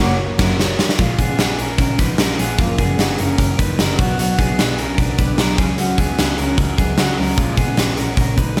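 A straight 4/4 pulse drives this breezy, youthful stretch of jangly indie pop, cut from a longer piece and opening on a band accent, with a big rock drum kit up front entering at 0.4 s with a fill, punchy kick, medium-tuned snare, hi-hat and crash in a bright stone room. A full-bodied dreadnought acoustic guitar is picked in the background, while a dark, slightly broken-up electric guitar picks arpeggios through tape and slapback echo. A bowed, reedy gut-string double bass with light vibrato anchors the low end, and warbling, detuned lo-fi synth keys with chorus and slapback echo color only the first 1.0 s, all set in a lush hall reverb for a big arena sound.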